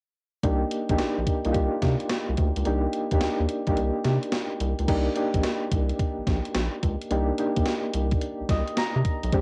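A light reverb and the soft haze of a home cassette recording frame this bouncy, slick new jack swing excerpt in C minor, moving at 108 BPM in 4/4 with a 66% swing on the sixteenths. Soft, mellow electric-piano-like synth keys carry the accompaniment over a Cm9 chord, their gentle, decaying tone shimmering with chorus and tremolo and colored by tape. Beneath them, a round analog bass sits up front with a deep, dark square-and-sine body, a quick filter pluck and a touch of transformer saturation. A gated 80s digital drum machine, sounding re-recorded in a large room, supplies a thumpy kick, hi-hat, crash and a gated-reverb snare. The kick drops out from 3.8 to 4.9 seconds just before the second section begins, and the keys play a fill from 8.2 to 9.3 seconds near the close.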